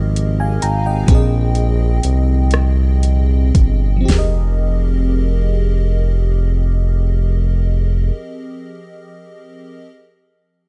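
Late-night and sultry, this short fragment from a longer piece is slow R&B in six-eight, in F minor at roughly 37-45 beats per minute, and it slows down over its first 4.1 seconds. An FM electric piano layered with a soft pad carries the accompaniment, its lush, dreamy tone detuned and decaying, colored by chorus and phaser and sitting back in the balance beneath the other parts. A smooth synth bass, mellow and sustained with a sawtooth-and-triangle body, holds the low end up front until 8.1 seconds. A produced electronic drum kit with a knocking kick, fat snare, metallic hats, rim click and toms plays only until 4.3 seconds, roughened by vintage 12-bit sampler grit and a tape-like warmth. The harmony moves from Fm11 to Bb9sus4 and back to Fm11 at 4.1 seconds, and the dry, close sound leaves the electric piano ringing on by itself to the end at 9.9 seconds.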